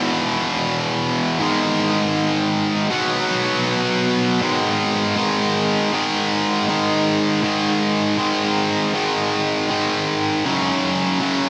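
Moving in a straight three-beat metre, this brooding, cinematic rock fragment is cut from a longer piece and carried entirely by a single electric guitar playing solo from 0.0 to 11.5 seconds. The guitar is picked, bright and tightly distorted, double-tracked and placed up front, sitting low in its register with a tape echo trailing behind it. Its chords step from E5 through G#5 to B5, and the second passage begins at 4.4 seconds on G#5 before settling on F#5 near the close. A huge ambient reverb with a six-second tail soaks the mix, giving the tight playing a dreamy, cavernous backdrop. The tuning sits slightly below standard pitch, at A4 = 438 Hz.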